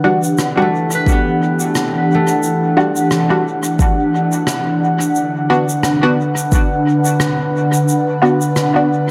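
Hazy and meditative, this ambient dub excerpt moves at 88 BPM in E minor with a light 16th-note swing, cut from a longer piece and drifting from Em9 to D6 at 5.2 seconds. An airy, breathy pad sits up front for the whole stretch, its detuned sawtooth and triangle tones blended with a noise layer, a moving notch and chorus, swelling in slowly and trailing off with a long release. Alongside it, a muted, deep chord stab with a quick filter pluck and short decay repeats through lush chorus and dub echo. A bright, ringing concert harp fingerpicks arpeggios from 0.6 to 5.5 seconds, its notes carried into the echoes, while an acoustic shaker, rim click and woodblock recorded in a big room scatter quietly through dub echo of their own. A deep, tape-warm electronic kick, layered and placed up front, anchors the groove from 1.1 seconds, all within a moderate spring reverb and an echo-heavy mix.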